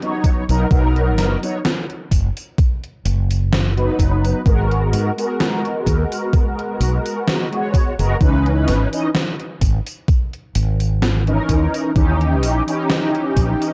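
Melancholic and hazy, this slow vaporwave fragment is cut from a longer piece and drifts through a lightly swung groove built on Bmaj7, G#m9, C#m9 and D#7b9. A mellow synth brass carries the accompaniment from start to finish, its brassy, detuned sawtooth tone thickened by ensemble chorus and tape echo, with ring modulation, a filter sweep and sustained, fast-attack notes sitting up front in the mix. Beneath it, a round fretless electric bass enters at 0.5 seconds with a direct, tube-saturated tone. An overdriven, thumpy electronic kick punches forward, while a gated 80s digital drum machine supplies hi-hat, tambourine and a snare soaked in gated reverb, both kits sounding sampler-like and re-recorded in a large room. The overall production is dark and warm, with little added reverb.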